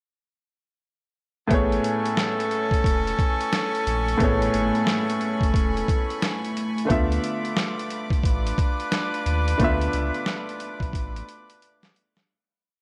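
Boom-bap hip-hop at 89 BPM in A major with a confident, soulful swing: a gritty, compressed sampler-style drum kit with a thumpy kick and sixteenth-note hats plays a laid-back beat, and a round sine sub bass loops with chromatic approach notes, while woody upright piano chords with a cassette-tape tint, floating bowed strings and a tight, close-miked trumpet section swelling long notes through tape echo all repeat like a sampled loop, until a drum fill at 10.9 seconds as the track fades out from 9.6 seconds.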